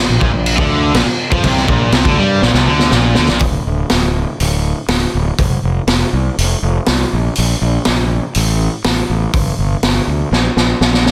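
A dense, heavily limited small-room sound frames this menacing, driving hard rock excerpt, with a gritty, saturated garage drum kit and a growly, punchy fuzz bass up front. Two bright, overdriven stack guitars pick a riff in the background over a Bb5 power chord until 3.4 seconds, after which the bass and drums carry on alone. The drums, with their high-tuned snare and boomy kick, enter at 0.2 seconds and play fills at 2.4 and 10.3 seconds.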